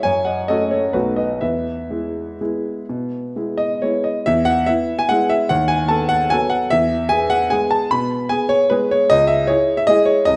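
A clear grand piano opens alone on an F#m chord, moving through B7 to a home key of E major in a graceful, elegant classical waltz in 3/4, played with rubato at a tempo that drifts between 120 and 161 BPM. The solo piano sits up front with a natural tone and short sustain, ranging from B1 to B5, while a recital hall reverb with an RT60 of 1.5 s gives the room a wet glow and the top end stays soft. At 4.3 seconds a second section begins, passing through B7/D# and E before settling on C#m as this short cut from a longer piece ends at 10.4 seconds.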